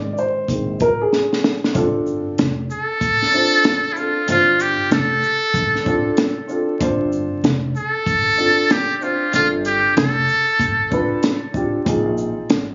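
A dark, mellow baby grand piano opens this relaxed jazz-hop excerpt on a Bb9sus4 chord, with a woody pizzicato upright bass beneath it, and a small drum fill enters at 1.1 seconds. At 1.8 seconds the harmony moves to G9sus4, and a compact cocktail kit settles into a swung 95 BPM groove in 4/4 with hi-hat, shaker, a punchy kick and a high-tuned snare, all with a rolled-off top. At 2.7 seconds a trumpet with a metal mute takes the melody up front, its buzzy, thin tone carrying light vibrato and scooped notes, with an analog delay trailing behind. The boxy, short-sustained piano sits close alongside the drums, while the steel-strung bass stays low and soft in the mix. The whole excerpt has the hazy feel of a phone recording in a club, with vinyl crackle, compression, light reverb and a dull top end that keep the mood easy and warm.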